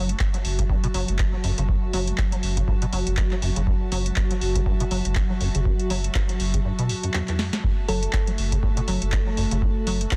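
Dry and densely limited, this raw, trippy acid house excerpt at 121 BPM swings its 16ths over a lone F#m7 chord in F# minor: a squelchy, resonant square-wave acid bass riff with tube saturation, ensemble chorus and tape echo rides over a round, deep analog bass and a deep electronic kick, while a booming drum machine adds handclaps, metallic hi-hats and a tonal snare, with a drum fill at 7.4 s. A moody, detuned pad and distant, earthy chamber strings fading in from the start both pump under sidechain, and a tine-like FM pluck flickers briefly at 7.9 s.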